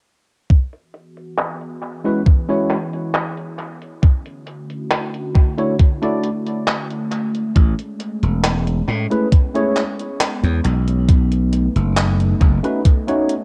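A thumpy, gritty electronic kick and a gated, overdriven 80s drum machine with handclaps and muffled hi-hat open this dreamy, faded vaporwave fragment at 68 BPM in E major at 0.5 s, soon joined by a warbling, detuned, lo-fi pad under a filter sweep, then a clean tine electric piano with lush chorus and delay at 2.0 s, and finally a bright, growly, punchy slap bass up front at 7.6 s, all moving through Dmaj9, Amaj7 and B7 in an echo-heavy cassette mix.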